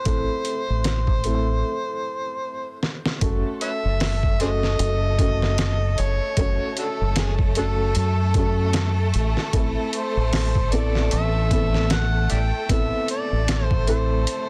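Dense, heavily limited and set in a small room, this dark, cinematic trip hop excerpt pairs a gritty, overdriven harmonica melody with dub echo against a felt-muted upright piano under tremolo and tape echo, a round, up-front fingered electric bass, and compressed, pitched-down sampler-style drums with a thumpy kick, while a lush bowed violin section enters with sustained chords at 3.2 seconds, just after a break and drum fill.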